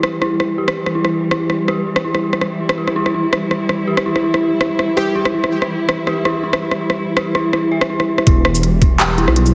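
Dark and cinematic, this half-time drum and bass excerpt opens with a lush bowed cello section holding sustained chords under sidechain pumping, while an eerie, inharmonic synth bell arpeggiates with chorus and delay, both under a filter sweep, as a crisp industrial drum kit of handclaps, hi-hat, rim click and shaker plays throughout, a punchy plucky lead flashes a single note at 5.0 s, and at the drop at 8.3 s a rumbling detuned saw bass and a gritty, pitched-down kick arrive, the mix sitting in a wet echo chamber with a heavily compressed radio sound.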